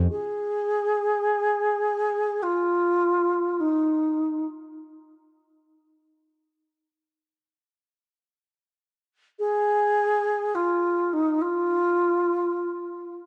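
A reedy, wooden-headed alto flute opens this disco fragment at 0.1 seconds, carrying the melody in a pure, tongued voice with vibrato. The line stays within a narrow middle range, giving the music a sultry, danceable mood even as it floats in free time. The flute falls away at 4.5 seconds and returns at 9.4 seconds to continue its melody. It sits up front in the mix, yet a moderate plate reverb lends it a distant, lingering halo. The overall production is dark and warm, with the highs softly rounded off, and the passage is cut from a longer piece.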